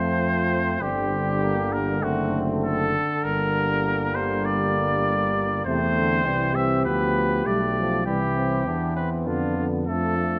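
A steady, straight 4/4 pulse at 99 BPM carries this stately, triumphant brass quintet passage, cut from a longer classical piece. The trumpet leads with the melody, up front, with a clear, vintage tone and vibrato, while a warm flugelhorn with light vibrato sings a second line from a distant, roomy place in the background. The French horn, smooth on top, and a soft-attacked euphonium set beneath it supply accompaniment, and a dark, punchy tuba anchors the bass. The five parts sound together for the whole 10.4 seconds. The harmony moves from F and G minor through D7 over F#, then settles into C major at 5.7 seconds, passing through B diminished and C before closing on D minor over F. Close, detailed microphones capture the ensemble within a moderate scoring-stage reverb lasting about 1.8 seconds, lending the writing a ceremonial breadth.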